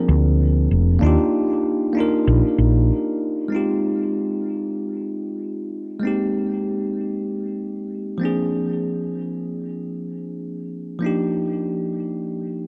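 Sunset chillout at 96 BPM in 4/4, with a light swing on the sixteenths and a relaxed, warm mood, heard here as a short cut from a longer piece. A bell-like tine electric piano carries the accompaniment throughout, its bright, clean tone sitting up front and trailed by tape echo. A woody fretless electric bass opens alongside it, dark, growly and round, but stops at 2.9 s, leaving a brief break before the next section begins at 3.5 s. From there the electric piano continues on its own through the rest of the passage. The harmony moves from Bb7 to Ebmaj7, then through Fm9 and Abmaj9 before returning to Bb7 and resolving on Ebmaj7. A moderate, lush hall reverb with a long tail wraps the sound in a generous sense of space.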